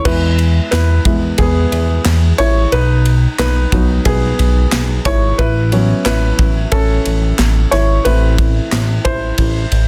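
A dense, heavily limited modern master with light reverb frames this short excerpt of hopeful, anthemic piano-driven pop, moving at 90 BPM in a straight 4/4 and tuned to A4 = 441 Hz. A dark grand piano with a smooth, vintage tone and short sustain sits up front and carries a featured solo across the whole passage, from 0.1 to 9.9 seconds. Beneath it, a retro, glossy synth bass blends pulse and sawtooth waves, its chorused, evolving sound shaped by pulse-width modulation and a moving notch, with a fast attack and sustained, mellow notes. An airy, polished studio kit of punchy kick, medium-tuned snare, handclaps, ride and crash adds a small-room acoustic character. The harmony travels from E to B, then A6, and settles on A minor near the end.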